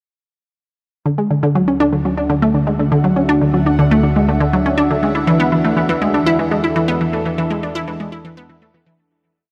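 Bathed in a huge ambient reverb, this cosmic, expansive piece of sequencer-driven space music centres on a bright, squelchy blip pluck up front, whose 12-step loop with tape echo drifts against the bar from 1.1 s, while a morphing, detuned wavetable pad fades in with slowly shifting chords from Dadd9 to E7sus4, a mellow pulse-width-modulated analog drone sustains the root, and a bubbling stepped-filter texture holds a high note in the background, until the recording fades out from 6.3 s.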